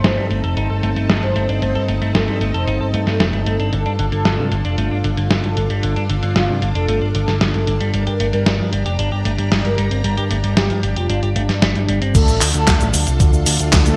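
A bright 1980s-style digital production with light reverb frames this melodramatic, danceable italo disco fragment at 114 BPM in a straight 4/4, moving through Adim, Dm and Gm before settling on Dm. A mellow, detuned synth brass carries the melody through chorus and phaser over lush string-machine chords with ensemble chorus, while a clean electric guitar plays compressed arpeggios through a low-pass filter and delay until 12.1 s. Underneath, a round, punchy picked bass with an envelope filter and tube saturation sits up front beside a gritty, dusty soul sampler-style kit of cabasa, crash, handclaps, hi-hat and a medium-tuned snare, all filtered and bathed in gated reverb, and a thumpy electronic kick joins at 12.1 s.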